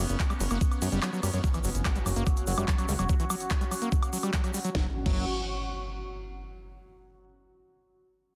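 A fat, nasal analog bass and a squelchy, gritty acid riff with distortion and digital delay open this hypnotic psychedelic trance excerpt at 145 BPM, over a background drone of moving overtones, an up-front overdriven knocking kick that drops out from 1.0 to 1.4 seconds, a techno kit with cracking snare, smooth hats, claps, ride, crash and woodblock, and a grainy egg shaker, before a background impact and an airy, breathy pad with a moving notch enter at about 1.4 seconds, all in a dense, heavily limited modern master.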